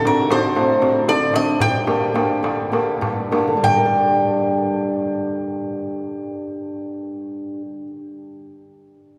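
Greek folk in 7/8 and G minor, this short cut from a longer piece has a moody, bittersweet character, its tempo easing from the start through 3.6 seconds within a range of 191-237 BPM counted in eighths. The Greek bouzouki carries the melody up front, its picked double strings ringing metallic with some octave-doubled courses. Beside it, a fingerpicked old ladder-braced acoustic guitar supplies accompaniment, dark, woody and boxy with the character of old strings. A metal-shell darbuka adds crisp, vintage-sounding percussion struck with hard hands, a band-limited tone sitting lower in the mix, and it stops at 3.9 seconds. The harmony moves from D7 to Gm before settling on G5 as the second section begins at 3.6 seconds. A heavy cathedral reverb from a church or concert hall lets the playing hang in a long, resonant space.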